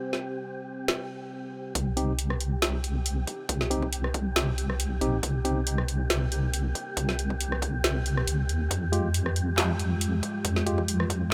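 A dark, detuned analog pad and an airy, wind-like noise texture open this meditative, cavernous deep dubstep excerpt with a half-time swing, as a deep house kit of handclaps, dark hi-hats, rim clicks and a woody snare sits up front. At 1.8 seconds a heavy, saturated wobble bass with chorus and a punchy electronic kick arrive to begin a build-up that runs to the end. A clean tine electric piano adds stabs soaked in dub echo, returning near 8.9 seconds over an Fmadd9 chord, while both drum parts carry a small, re-recorded room sound and everything sits in a digital ambience.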